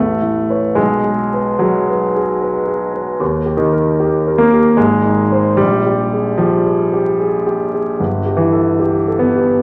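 A polished grand piano opens this serene, dreamy impressionist solo, sitting present and up front as it drifts through Aadd9, D# and G#add9 harmonies from the low G1 up to C#5. The 3/4 pulse moves at about 75 BPM with uneven, rubato beats, giving the phrase a floating, unhurried sway. A wet scoring-stage reverb and a layer of vinyl crackle surround the playing across this 9.6-second excerpt, which settles on Gsus2 at 8.0 seconds.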